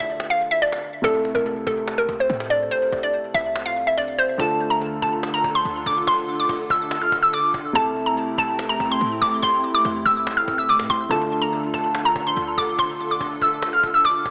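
A hollow, bouncy square-wave pluck carries the melody up front, with chorus, tape echo and a low-pass filter, over a worn baby grand piano, a deep, boomy 808-style bass and a woody cajon with faint snares, setting a dark, menacing half-time trap beat at 143 BPM in D minor. At 4.4 s a soft, flute-like pad enters with slow-attack sustained chords thickened by ensemble chorus, as the harmony moves between Dm and Am. The echo-heavy mix has a light studio reverb and a small-speaker sound, and the clip is cut from a longer piece.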